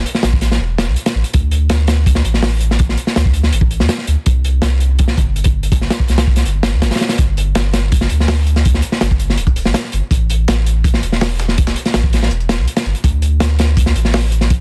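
A straight 4/4 jungle drum and bass groove, dark and nostalgic, rides on an up-front, crunchy breakbeat kit with a tight kick and a small-room, rolled-off sound over a thick, saturated triangle sub bass with fast attack and long sustain, while a very quiet, compressed, dusty soul sampler-style kit of hi-hat and snare joins at 7.2 s, all set in a dry, dense, heavily limited master with vinyl crackle in this fragment of a longer piece.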